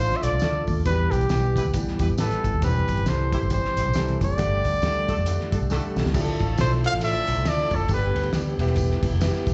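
Driving and passionate, this uptempo 1960s-style soul piece swings at 136 BPM in D dorian, with a jazzy, up-front trumpet melody carrying slapback echo over a distant horn section with the same echo, a long-sustaining baby grand piano, very quiet fast-rotary tonewheel organ chords, a round, foam-muted fingered electric bass, a muffled, gritty cloth-damped drum kit whose fill at 5.7 seconds leads into a new section, and a jingly tambourine in the background, all heard as a live gig through the venue's PA with club reverb and a dull top end.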